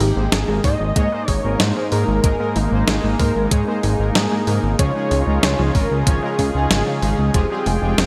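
This uplifting, romantic synthwave passage in Ab major moves at 94 BPM in a straight 4/4, and it opens at once with a thick, detuned unison lead carrying the melody over a smooth analog pad, a bright pluck arpeggio and bold synth brass stabs. A thumpy electronic kick joins at 0.6 s and stops at 7.5 s. It sits alongside a clean 12-bit drum machine whose fat snare and hi-hat carry a gated reverb. Up front, a fat sawtooth bass with a filter sweep pumps against the sidechain, as does the chorused pad glowing in the background. The lead's mellow vibrato is trailed by delay and shimmer reverb. The nasal, brassy stabs also carry chorus, delay and shimmer, while the punchy, wave-folded pluck stays very quiet beneath them. The harmony moves from Absus2 to Dbadd9 at 4.8 s and Fmadd9 at 7.3 s, all set in a lush hall with a bright 1980s-style digital sheen.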